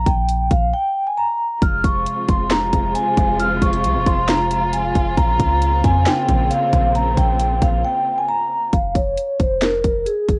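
A close-miked, metallic vibraphone with fast motor vibrato carries the eerie, melancholic melody of this half-time trap hip hop fragment at 135 BPM, colored by a low-pass filter and cassette tape and swept by a filter from 8.7 seconds, over a deep, boomy 808-style bass, an overdriven trap kit of hard-clipped kick, sharp snare, bright hats and handclaps, and dark, bowed chamber strings holding Fm and Bbmadd9 chords from 1.6 seconds, with short breaks in the groove and the small-room ambience of a home cassette recording.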